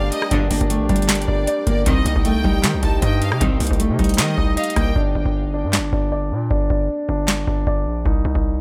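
A booming analog drum machine sits up front in this menacing, brooding half-time trap excerpt at 155 BPM in G minor, its deep kick, crisp snare, handclaps, rim click and metallic hats joined by a distorted, saturated 808-style bass. Over a low-passed warm grand piano, a fingerpicked nylon-string guitar carries the melody with tape echo and audible finger squeak, joined by a biting violin section, a very quiet ethereal pad and intense bowed stabs from a rich symphonic string section. By 5.0 seconds the guitar, violins and pad have dropped away for a break in which piano, bass and drums carry on to the end of the excerpt, set in a small room sound.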